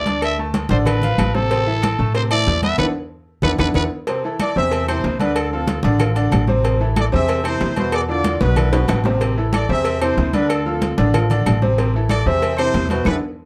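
A raspy, growling trumpet leads this fiery salsa fragment at 187 BPM in A harmonic minor, carrying the melody up front until 3.8 seconds, when a band accent and drum fill hand over to a smooth-topped horn section that takes the line from 4.4 seconds. Beneath it, a thumpy pizzicato upright bass and a brilliant, long-sustaining upright piano cycle through Dm, Am and E chords, while ringing metal-shelled timbales with agogo bells sit close and dry over background congas, tight high-tuned bongos with cowbell, and woody, saturated claves. The passionate performance sits in moderate studio reverb with a dark production.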